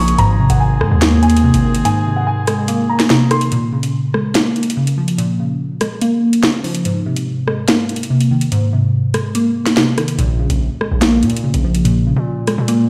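Ominous and tense, this cut from a longer drill hip hop piece sits at 144 BPM in a half-time feel in Bb minor, alternating between Abadd9 and Bbm7. A boxy, mellow grand piano melody with delay and a low-pass filter joins a brass ensemble's sustained chords with light vibrato for the opening 3.5 seconds, while a crystalline, detuned wavetable pluck with chorus carries the accompaniment throughout. The up-front drill kit brings a sharp snare, metallic hi-hats and rim clicks, and a heavy, saturated 808-style bass drops out at 1.8 seconds and returns at 10.2 seconds, all heard as if played over a big sound system in a bare stone room.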